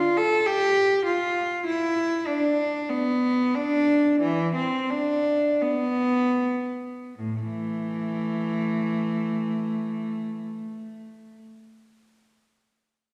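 Introspective and flowing, this slow, rubato baroque-style suite movement in A minor for unaccompanied bowed cello, at 38-53 BPM and slowing through its first 7.2 seconds, features a single player up front with a rich, reedy gut-string tone and light period-style vibrato, heard until 11.4 seconds in a wet recital-hall reverb as part of a longer piece.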